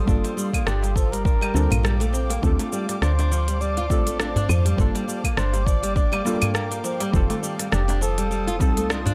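Organic downtempo in G minor at 102 BPM with a gentle 16th-note swing, earthy and warm, where a woody, round FM bass with tube saturation and a layered, tape-warm electronic kick sit up front under a crisp electronic kit of claves, hi-hat, rim click and shaker, a close, dry metal-shell darbuka in the background, fingerpicked nylon-string guitar arpeggios with tape echo, dark warbling chord stabs and an ethereal, airy pad pumping against the kick, while a veiled, forceful bucket-muted trumpet enters at 0.7 seconds with a jazz-style solo over a Gm7, Dm7 and F7 progression, all captured as a dry, gritty hardware recording cut from a longer piece.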